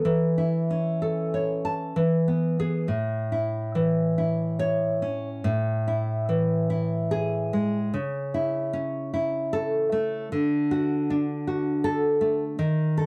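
Dark, lightly reverberant production places a warm nylon-string classical guitar up front in this short, nostalgic romantic solo, fingerpicked with rubato in a three-beat metre, as a brief opening phrase gives way at 2.9 s to a longer passage that carries through to the cut at 13.1 s.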